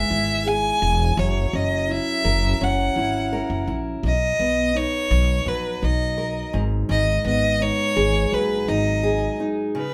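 A rich, smooth, even bowed violin with vibrato carries the melody up front in this easy-going, carefree acoustic pop passage, cut from a longer piece. A warm fingerpicked steel-string acoustic guitar accompanies over chords moving from C#m7/G# through F#7 and Bmaj7 to G#m7, while a woody, thumpy pizzicato upright bass sits low and dark until it drops out at 9.3 seconds. The trio plays live together in one room, wrapped in moderate studio reverb.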